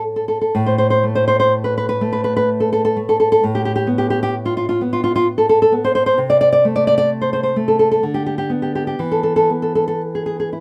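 Moderate studio reverb gives an intimate room around a warm, up-front nylon-string guitar, thumb-plucked in a classical manner and playing solo from 0.0 to 10.6 seconds across a range from A2 to D5. This melancholic romantic fragment, cut from a longer piece, sits in A minor at 64 BPM in 3/4, its uneven beats stretched with rubato and tuned to A4 = 441 Hz. After a chordless opening, the harmony moves through A7sus2, Am/C and G/D before settling on E5 at 9.0 seconds.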